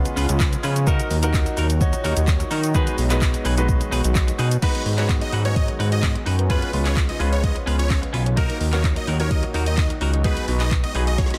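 A clear, intimate concert grand piano plays accompaniment in this energetic dance-pop passage, its action noise audible, alongside a fat, saturated analog bass up front and a resonant, detuned pad that sits in the background with chorus and phaser. The bass, piano and pad all pump to the sidechain at a driving 128 BPM in straight 4/4, moving through C#7, D#m and B6 in G# dorian. A bright, twangy clean electric guitar plays a riff with subtle chorus, while a smooth R&B kit with a soft kick, woody snare, warm hats, handclaps and shaker keeps the groove. At 4.6 seconds a huge, lush supersaw melody arrives, pumping and trailed by dub echo, alongside a faint, tine-like synth pluck spinning mellow arpeggios as the chords shift to G#m7. A drum fill at 11.2 seconds closes this excerpt from a longer piece, which has a dry, dense and heavily limited modern sound.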